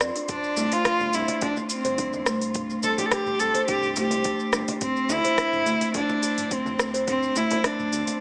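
Organic downtempo at 106 BPM in 4/4, this mystical, earthy excerpt moves from Csus2 to D7(no3). A woody kalimba plays arpeggios through digital delay over a round, dark analog bass, while an up-front afro-pop drum kit with metallic hats, a deep background electronic kick from 0.3 s and soft-handed congas from 0.6 s carry the groove beneath a breathy, wind-like tuned noise texture. An intimate, airy-bowed cello with light vibrato leads the melody through tape echo from 0.3 s, all set in a moderate echo-chamber reverb with a small-speaker character.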